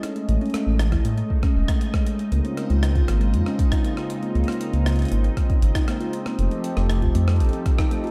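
A straight 4/4 pulse at 118 BPM drives this eerie, cerebral IDM excerpt, where a deep, up-front electronic kick from 0.9 s and a gritty, pitched-up jungle sampler kit of hi-hat and rim click with tape echo sit beneath a rumbling, detuned saw bass, a smooth chorused analog pad holding Amaj7, Dbmaj7 and F7 chords, a ringing harp-like synth pluck playing arpeggios through cassette tape and tape echo from 0.2 s, and a bright, bubbling stepped-filter texture glimmering in the background, all in a light reverb.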